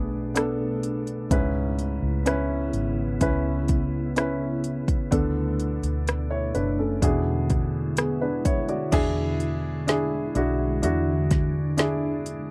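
A dark, woody upright piano sits up front in this longing, heartbroken pop ballad excerpt, joined at 0.4 seconds by an electronic house drum kit with a deep kick, woody snare, smooth hats, rim clicks and crashes, while a round, foam-muted vintage electric bass anchors the low end and a glassy, ethereal FM pad with ensemble chorus and its own reverb holds sustained chords through Bm7, C#m7, Bm7/D and E7, all captured in a dry, close 1970s-style studio sound.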